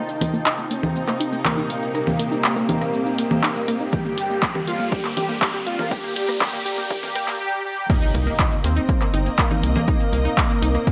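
A fat, nasal analog lead carries the melody from the opening moment, thickened by ensemble chorus and delay, while a lush, detuned unison pluck spins arpeggios through tape echo and a filter sweep during the build-up. Beneath them sit a veiled, muted string section holding sustained chords and a cloudy, evolving granular pad, both kept in the background, with the pluck, lead, strings and pad all pumping against the sidechain. An overdriven deep house kit of congas, handclaps, hi-hat, rim click, shaker and crash arrives almost at once, and a punchy electronic kick joins at 3.9 seconds as an electronic riser climbs toward a brief break. The drop lands at 7.9 seconds with an impact, and a tight, driving sequencer bass with tube saturation enters at 8.1 seconds, sitting up front. This dark, dramatic melodic techno excerpt, cut from a longer piece, moves through Cm7 and Gm in a straight 4/4 feel, framed by light digital ambience.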